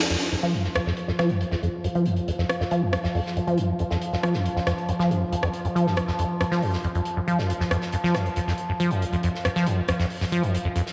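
A band accent opens this hypnotic, relentless peak-time techno excerpt at 138 BPM, as a resonant drone with moving overtones enters alongside a loose acoustic kit whose hi-hat and fat snare sit back in a pumping studio room. A squelchy sawtooth acid bass riff ranging from F2 to F3 follows at 0.1 s, up front with analog chorus, diffuse delay and a filter sweep that runs to the end. An overdriven, layered electronic kit adds crash cymbal and rim click until 10.0 s, all within a dreamy, reverb-soaked hall.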